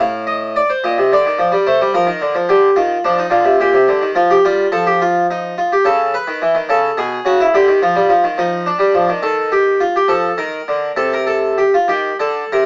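Set in a 12/8 metre and played with a flexible, rubato feel, this short baroque-style suite movement unfolds at a measured pace, carrying a grave and solemn mood. A lone harpsichord carries the whole passage, a full-bodied French-style instrument with two sets of strings whose plucked tone sits up front in the sound. Its range stretches from A2 up to F5, giving the writing a rich low foundation beneath the upper lines. The harmony moves from F and Bb through a colourful B13 at 5.8 seconds, settles onto D minor, and then darkens toward C minor extensions by 11.0 seconds, lending the passage a searching, weighty character. A light reverb surrounds the instrument, while the overall sound has the narrow, boxy colour of an AM radio broadcast. The recording is a brief fragment of a longer piece, lasting about 12.7 seconds.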